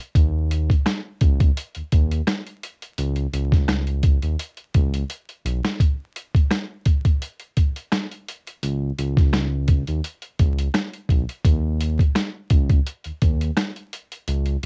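A lightly swung 4/4 boom-bap groove opens this reflective, tough hip-hop fragment, built from a gritty, pitched-down sampler-style kit whose thumpy kick, medium-tuned snare, rim clicks and hi-hat sit up front with cassette-tape color, broken by a short drum fill from 5.1 to 5.8 seconds. From 0.2 seconds a dark, sustained synth bass of sawtooth and triangle tones, touched with ring modulation and transformer saturation, holds a narrow low register close to the listener. The dry, home-recorded sound carries a layer of vinyl crackle.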